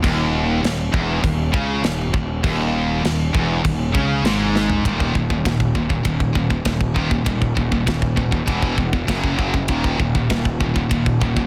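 A short cut from a relentless, aggressive heavy metal piece opens with a full band at once: a tight, up-front acoustic drum kit, a punchy, growly fuzz bass and three distorted guitars churning out riffs together in a straight four-beat pulse. The guitars sit in the background, with a bright high-gain guitar and a scooped high-gain guitar joined at first by a double-tracked, compressed fuzz guitar whose tone is warmer. The drums carry bright cymbals, a medium-tuned snare, toms and a clipped kick, and a drum fill at 4.5 seconds leads into the second section, where the fuzz guitar drops out at 4.8 seconds. The harmony moves from a dark Dbmadd9 over Eb to Eb5, E5 and Gb5 power chords. A small room ambience surrounds the dense, heavily limited modern mix.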